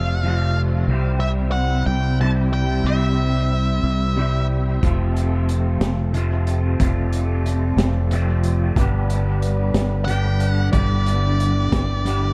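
Hazy and kaleidoscopic, this slow 6/8 psychedelic rock excerpt floats on a twangy, rotary-swirled electric guitar riff with dub echo, a round, up-front fingered bass and a reedy, breathing pedal harmonium in the background, while a dark octave-fuzz lead guitar drifts through dub echo before pausing and returning at 10.0 seconds, and a gritty breakbeat kit with a high-tuned snare, punchy kick and rolled-off top enters at 4.8 seconds, all set in an echo-heavy small room.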